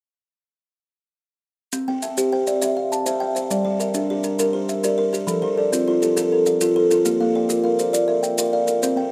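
A rough home-demo mix with light reverb and a touch of studio ambience frames this rippling, warm cut from a longer piece of southern African traditional music: an mbira-style interlocking cycle in 12/8 at 135 BPM in C mixolydian, moving through C, Gm, F and Bb. A dry, close-miked kalimba, thumb-plucked, full and ringing with a woody, hollow-box tone, sits up front arpeggiating from 1.7 s, as grainy acoustic maracas enter alongside it, close and lower in the mix. At 1.9 s a second kalimba joins with soft, mellow fingertip plucks and an airy, buzzing rattle.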